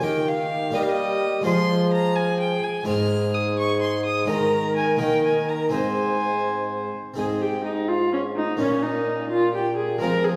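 Festive and courtly, this fragment of a renaissance-style consort dance moves in a straight 6/8 at 84 BPM in Ab major, its harmony passing through Eb, Fm and Ab before turning to Bbm in a new section from 7.2 seconds. A gut-string violin with light vibrato carries the melody high above a reedy, period-style viola on the second line, while a mellow bassoon holds the bass. A full, dry harpsichord, close-miked and up front, plucks the accompaniment against the others, which sit further back in a wet recital hall.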